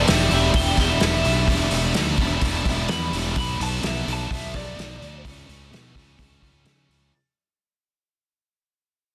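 A bright, twangy twelve-string electric guitar carries a compressed, clean melody through spring reverb and analog delay until 5.2 seconds, over a scooped, high-gain distorted riff guitar, a warm overdriven riff guitar set back in ensemble chorus until 3.4 seconds, and a growly fuzz-driven fingered bass, as a punchy, rolled-off vintage drum kit pumps in a small room from 0.1 seconds in this restless, bittersweet indie rock fragment at 128 BPM in E dorian, which moves from Em7 through Bm to A/C# and fades out throughout under a dense, heavily limited master.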